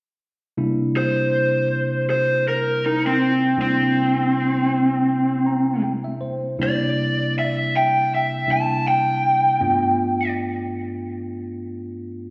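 Blues with a soulful, rollicking swing, this short cut from a longer piece sets an up-front, overdriven lead guitar from a small cranked amp, carrying the melody with slapback echo and analog delay, over a clean tine electric piano through a combo amp that accompanies on C7 and G7 and adds a fill at 5.1 seconds, the pair heard as a live gig through the venue's PA with recital hall reverb and a moderate plate.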